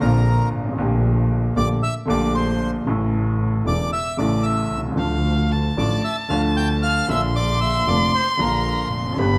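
The rhythm is a rubato tango in 4/4, pulsing loosely around 115 BPM, with a passionate, sultry mood in this brief fragment of a longer piece. A reedy bandoneon carries the melody high above a warm, intimate baby grand piano, whose audible action noise and up-front placement make the accompaniment feel close and natural. Underneath, a dark bowed double bass adds vibrato and portamento, its smooth top giving the low line an expressive sheen. At 5.0 s a bowed violin enters with a nasal, boxy second line, up front and full of vibrato and sliding portamento, as the harmony moves from Bbadd9 through A to Dm and Bb. A large studio reverb adds moderate space, and the bandoneon drops out at 8.9 s while the other parts sound on to the end.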